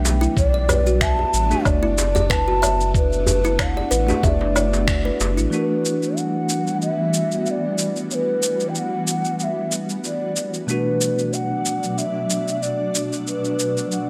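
A breathy, hollow ney carries the mystical, earthy melody with vibrato and digital delay over a bell-like tine electric piano and a blurred granular cloud pad, both pumping, in this organic downtempo cut at 93 BPM in E minor, with woody kalimba arpeggios, a deep round analog bass, a thumpy electronic kick and a cracking djembe all falling away by 5.5 seconds as the chords move from Bm7 to Em7, while gritty electronic shaker, woodblock and finger snaps carry on through the light small-room ambience to 14.1 seconds.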